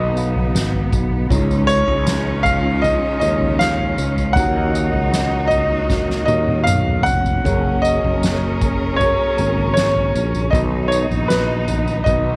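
The recording has a roomy sound, with a moderate spring reverb and a small room ambience around the band. This heartbroken pop ballad in Eb minor moves at a slow 78 BPM in a straight 4/4, cut from a longer piece, with the harmony passing from B through Dbadd9, Ebm7 and Gbadd9 before returning to B. A clear grand piano carries the melody up front, while a rich cello section sings an intense, vibrato-laden second line beneath it. A mellow tine electric piano sits in the background, alongside a dark, lush string section holding sustained chords and a very quiet nylon-string guitar fingerpicking full-bodied arpeggios. A growly, bright fretless electric bass anchors the low end. The soft-mallet drum kit enters at 0.4 seconds with a boomy kick and fat snare, a jingly vintage tambourine adds color, and a drum fill runs from 5.9 to 7.5 seconds.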